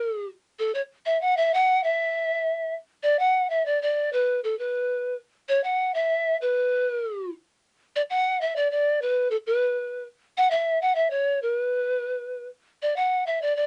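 A breathy, polished pan flute plays alone through this wistful, melancholic Andean folk excerpt in B minor at 98 BPM in a straight 2/4, its woody vibrato and chiff sitting up front with rolled-off highs and cassette-tape grain, in a wet booth ambience of a home cassette recording, as one phrase is stated and then repeated from 7.9 seconds to the cut at 13.7 seconds.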